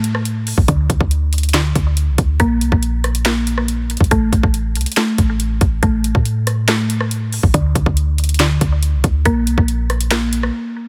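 This is a hard-hitting, dark trap and hip hop excerpt moving in a half-time feel, cut from a longer piece. A mallet-like synth pluck carries the arpeggios, its woody, round FM tone mellowed by chorus and trailed by delay, sitting a little behind the other parts. Beneath it, a clean 808-style bass booms deep and sine-pure, striking fast and then decaying. The trap drum kit is electronic and up front, with a hard-clipped kick, sharp snare, metallic hi-hats, handclaps and rim clicks. The mix is dry and heavily compressed with a radio-like sound, and at 10.5 seconds the bass and drums stop, leaving the pluck alone for a brief break until 10.9 seconds.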